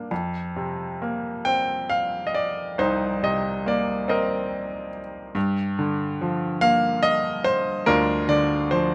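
Set in 6/8 and taken with a free, rubato feel, this brief classical excerpt moves at a slow 44-49 BPM counted in dotted quarters. A bright baby grand piano plays alone from 0.0 to 8.9 seconds, spanning C2 to G5 in a lyrical, melancholic and reflective voice. The harmony rests on F7sus4 before shifting to Gm7 at 5.4 seconds, and the instrument is tuned slightly high, with A4 at 441 Hz. Close, detailed microphones keep the piano present and intimate, so the clatter of its action can be heard along with a polished, brilliant tone. A light reverb adds a touch of space around the sound, which stays up front throughout this fragment of a longer piece.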